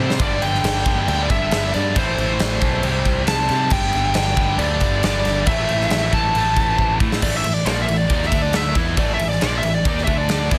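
Menacing and driving, this short hard rock cut from a longer piece charges ahead at 137 BPM in a straight 4/4, centred on A minor. A smooth, overdriven lead guitar carries the melody high over the band, while a crunchy, double-tracked overdriven guitar and two tight, bright distorted guitars play a picked riff low in the mix. A growly, punchy picked electric bass sits firmly beneath them, and a big acoustic rock kit with a punchy kick, medium-tuned snare, crash and ride rings up front in a bright stone room. The chords move through G, Am and C before a drum fill at 6.8 seconds leads into a lead guitar solo at 7.2 seconds, where the harmony shifts to A5 and D5 power chords. The sound is dense and heavily limited, with a modern studio sheen.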